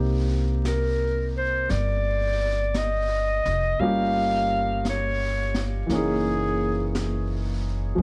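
A clear, punchy clarinet with light vibrato and tape echo carries the melody up front from 0.7 to 6.9 s in this intimate, melancholic jazz ballad excerpt in C minor at 57 BPM with a swung feel, over a woody upright piano with long sustain, a thumpy pizzicato upright bass on gut strings, and a brushed drum kit with a high-tuned snare and hi-hat entering at 0.6 s, moving from Cm9 through Gm7b5 to F#13 in a moderate studio reverb laced with vinyl crackle.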